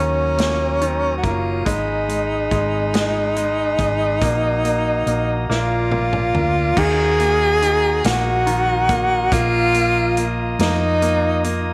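A breathy, intimate tenor saxophone carries the melody up front with vibrato and a soft, whispered attack in this aching, dramatic six-eight pop ballad, moving slowly at 47 BPM in Eb harmonic minor before settling into Eb minor, through chords such as Ebm7, Abm and Bbsus4. A brilliant concert grand piano with short sustain, clean tonewheel organ chords through a stopped rotary speaker, and a dark, round hollow-body electric bass support it, while a natural country drum kit with a punchy kick enters at 0.4 seconds. The drums play a fill from 5.5 seconds into the second section at 6.8 seconds, and a moderate echo chamber reverb surrounds this fragment of a longer piece.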